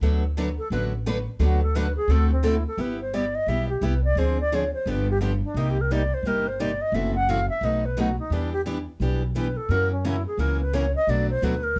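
Lightly reverberant and dark in its production, this charming, playful jazz manouche swing fragment moves at 174 BPM in G major, cut from a longer piece. Two picked steel-string acoustic guitars carry the accompaniment with audible finger squeak: one warm and concert-sized, the other a brighter, boxy parlour guitar with fresh strings set in the background. Beneath them, a thumpy, woody gut-string upright bass plucks up front, while an airy alto flute with vibrato, soft attack and lifted highs enters at 0.6 s to solo over chords that wander from D6 through Cm7 and B7 to Bm7.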